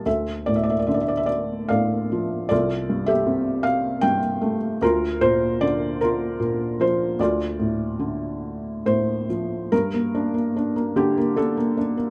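Light reverb surrounds a close, intimate felt-muted upright piano, its mellow tone, short sustain and audible action noise sitting up front in this wistful, dark classical fragment cut from a longer piece. The solo piano moves in a rubato 3/4 at 67-79 BPM in D minor, ranging from C2 to G5 as the harmony passes from Dm through Fadd9/C, Bb/D and Dm7. At 9.7 s a new section turns to Gm before the excerpt ends at 12.1 s.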